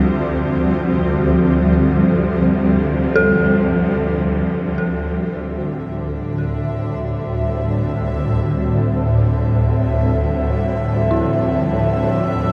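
Drenched in a cavernous cathedral reverb, this dark ambient drone excerpt feels desolate. A swarming, tense, detuned granular drone sits low and up front beside a blurred, cloudy pad of sustained chords, while an eerie, inharmonic FM bell spins arpeggios through chorus and delay. At 4.5 seconds a filter sweep begins on the drone and a bubbling, resonant texture with random filter steps enters high above, lasting until the cut at 12.5 seconds.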